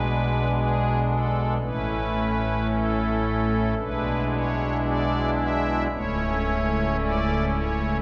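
A pipe organ, voiced with its soft, shimmering string celeste stops, carries this short classical chorale-style passage alone from the first moment to 8.0 seconds. The mood is majestic yet serene, moving at a slow 56 BPM in 4/4 with a free, rubato feel in A major, tuned to A4 = 438 Hz. Its romantic voicing spans from a deep C#1 up to E5, and the organ sits up front in the mix. The harmony moves from G#dim/B to A, then to E7/B at 3.8 seconds, before settling on A/C#. A lush church reverb with a long 2.8-second decay surrounds the sound, and the passage is cut from a longer piece.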